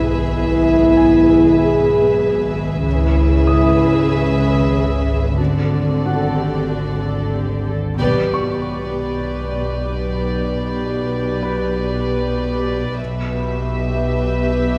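A mellow French horn section holds sustained chords through the first 7.6 seconds of this ominous, mysterious suspense cue, over soft sul tasto strings (violins carrying a floating melody and a dark second line, dark violas, warm cellos and rich double basses), a calm, warbling organ-like drone with ensemble chorus, and a clear, intimate baby grand piano in the background, all heard from further back in a wet scoring-stage reverb, with a band accent at 8.0 seconds as the harmony moves to G/B.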